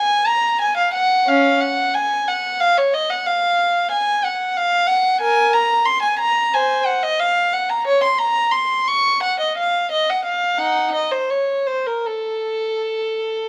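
Classical baroque-style suite movement for unaccompanied violin in Bb minor, moving at 90 BPM in 4/4 with a flowing, introspective rubato feel. A single bowed violin plays alone throughout the 13.5 seconds, its dark, nasal gut-string tone carrying a reedy, period-style character across a range of Db4 to Db6. Close, detailed microphones and light reverb keep the player up front in this fragment cut from a longer piece.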